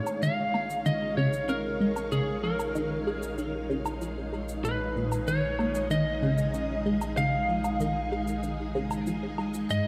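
Over a straight 4/4 pulse of delayed electronic cabasa and woodblock, this expansive, mysterious excerpt of ambient, sequencer-driven space music sets a squelchy, ring-modulated blip pluck riff under a filter sweep, a deep, round sub bass fading in beneath lush, vintage string-machine chords on A#m7, and a bright, twangy, slightly broken-up lead guitar melody with delay up front, inside a dark plate reverb.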